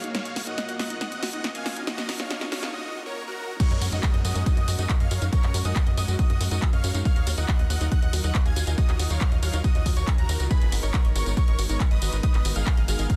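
A straight 4/4 pulse at 139 BPM drives this bittersweet, soaring uplifting trance excerpt in Eb minor, where a huge, euphoric supersaw lead, a lush background pad and a round, nasal analog pluck, all pumping with the sidechain, ride over a punchy, tape-warm drum machine with a clipped snare through a build-up with a drum fill and a brief break, before the drop at 3.6 s brings in an up-front electronic kick, a tight, saturated sequencer bass and a catchy plucky unison lead with vibrato, all in a dense, heavily limited mix with little reverb.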